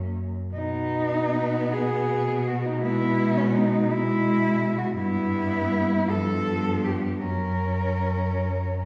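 Set back in a reverberant recital hall with a softened top end, this lyrical classical fragment for cello ensemble sways in a rubato 6/8, as a warm, expressive lead cello sings the melody up front with vibrato and portamento over a clear, focused second line and a soft-attacked bass gliding in the background, while a smooth, even accompanying cello joins at 0.6 s, the two lower voices giving the blend a rich depth.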